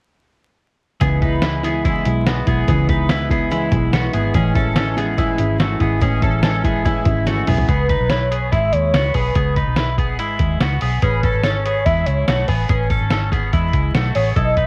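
Bright, twangy twelve-string electric guitar arpeggios ring through this bittersweet, wistful slice of jangly indie pop at 144 BPM in C# minor, over a round, foam-muted fingered bass and a muffled, pitched-down sampler-style drum kit with a thumpy kick, while an up-front jumbo acoustic guitar with finger squeak plays until 7.7 seconds, when a drum fill gives way to a velvety, detuned synth lead carrying the melody with chorus and vibrato, in a dry home cassette recording with vinyl crackle.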